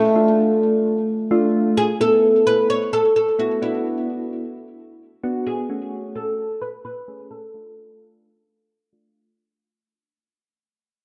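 Pop at 130 BPM in 4/4 with a straight feel, this short excerpt cut from a longer piece sounds nostalgic yet upbeat. An up-front oud carries the melody from the start to 8.9 seconds, its plucked, woody double strings filtered and touched with delay. Beneath it, soft electric-piano-like synth keys supply round, mellow accompaniment with fast attacks and decaying notes, coloured by chorus, phaser and a low-pass filter until 9.3 seconds. The harmony moves from Dm through Asus2, Bm and F#m before returning to Dm. A plate reverb with a 2.6-second tail bathes the dark production, and from 2.0 seconds a filter sweep and fade-out carry the passage to its close.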